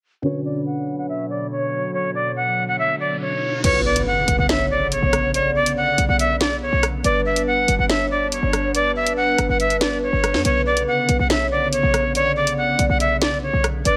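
A breathy, tongued jazz flute with vibrato opens this cold, menacing drill cut at 0.2 seconds, sitting up front over a felt-muted upright piano, whose intimate tone carries audible action noise, and a hollow, detuned pad smoothed by chorus, all heard through a low-pass filter sweep. The piano drops away just after a background riser builds, and at 3.6 seconds an electronic impact lands as the full beat arrives at 141 BPM in 4/4 with a half-time feel. The drill kit is sharp and produced, with bright hats, rim clicks, a snapping snare and crash cymbals pushed forward, while a short, punchy 808-style bass with a fast attack decays beneath it. A woody, clarinet-like synth lead with chorus, vibrato and digital delay enters alongside the flute as a second line. The harmony in B harmonic minor moves from Bmadd9 to G and back, and the whole piece sits in a light reverb.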